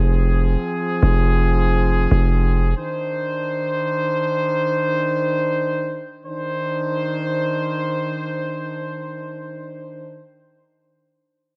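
A dark, cold drill hip hop fragment cut from a longer piece, in which a classical-style brass section sits up front holding sustained chords with light vibrato and a smooth top, shifting from Fm to Cmadd9 at 2.8 s, while a punchy, saturated 808-style bass with a sine body and noise layer strikes hard and heavy before decaying away by 2.7 s, all within a light studio reverb.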